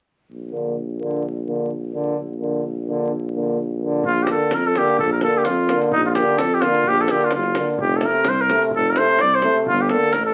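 A brisk 2/4 pulse at 128 BPM drives this Balkan brass band fragment, its sixteenths carrying a light swing, in Bb major with a wild, virtuosic mood. From 0.3 seconds a mellow, up-front tuba lays down the bass with a soft attack and light vibrato, while a clear euphonium, played with vibrato, and trombone hold accompanying lines from a roomy distance in a classical style. At 4.0 seconds a tight, close and dry davul enters, and at 4.1 seconds a warm trumpet steps forward with the melody, opening the second section. The harmony rests on Bb before moving to F and then G minor near the end of this passage cut from a longer piece. Moderate studio reverb surrounds the band, and the sound carries the crackle and age of a very old 78 rpm record.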